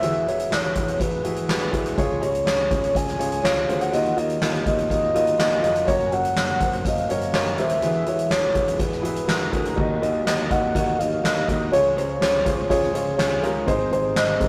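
The warm concert grand piano leads this hopeful, anthemic piano-driven pop excerpt, sitting up front with a deep bass register as it carries the accompaniment at 123 BPM in a straight 4/4. Above it, a mellow horn-like synth lead sings the melody through a round, detuned, vintage tone with a soft attack, vibrato and chorus, giving it a gentle warble until 13.4 seconds. A bright, growly picked electric bass anchors the low end, while a soft-mallet drum kit with a punchy kick, medium-tuned snare, dark cymbals, hi-hat, crash and handclaps sits close and natural in the mix. At 9.8 seconds a very quiet chorused pulse-width pad slips in with shimmering, retro sustained chords as the harmony moves from Ebm through Db to Ab. The whole has the rough, tube-saturated character of a rehearsal-room recording, set in a moderate small-room reverb, and it is cut from a longer piece.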